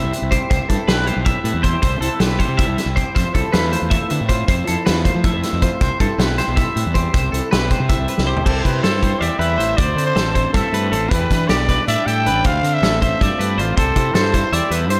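A dreamy, reverb-soaked mix with a small-room ambience frames this bright, playful math rock and midwest emo excerpt in 7/8 at 317 BPM in C major, where a twangy, chorus-drenched twelve-string electric guitar spins delayed arpeggios over a lo-fi, slightly broken-up electric guitar through a small old amp and a round, fuzzed fingered bass. A loose, roomy indie drum kit with dark cymbals and a punchy kick sits up front, and a fill at 8.2 seconds ushers in a growling trumpet at 8.3 seconds, its raspy, gritty melody carrying light vibrato and delay. The harmony drifts from Cmaj7 and Fmaj7 into a run through C6, Dsus2, Em7 and Dm9.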